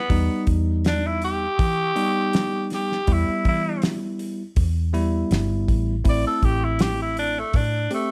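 A straight-eighth soul blues groove at 81 BPM in 4/4, this smoky, soulful passage in E harmonic minor is cut from a longer piece, with a cloth-damped, thuddy drum kit up front, built on a fat snare, tight kick and hi-hat, gritty and saturated with a rolled-off top, beneath a dark, round, foam-muted fingered electric bass. A raspy, clear tenor saxophone carries the melody as an up-front solo across the full 8.1 seconds, its vintage tone set in plate reverb, while a bell-like, bright tine electric piano adds clean, direct accompaniment. The harmony rests on Em before moving to Am at 6.1 seconds, all within a light room reverb.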